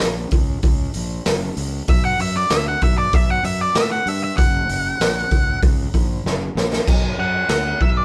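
Heavy and smoky, this excerpt of blues rock power trio with a southern rock lean moves at 96 BPM in a straight 4/4, built on B minor with chords shifting from F# to Bm7 and back. A gritty, punchy garage drum kit with dark cymbals sits up front, underpinned by a growly, overdriven fingered bass, and at 1.9 seconds a dark octave-fuzz lead guitar enters with a distorted, picked solo line in a high register. A drum fill at 6.3 seconds leads into a return to Bm, all captured as a band playing live in one room with light reverb.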